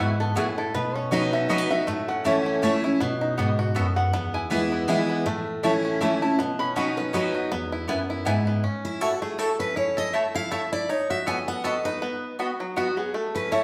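A driving, virtuosic bluegrass piece at 160 BPM in 3/4 with a swung feel opens with a metallic, nasal lap resonator guitar, played with a steel bar, taking the lead over twangy banjo melody, round double-string mandolin stabs and a full-bodied, up-front picked dreadnought acoustic guitar. The resonator drops out at 6.7 seconds, and at 8.6 seconds the acoustic guitar steps forward for its own solo through changes built on E, A and B chords. The band plays live in one room, bathed in a wet, large studio reverb, and the clip is cut from a longer piece.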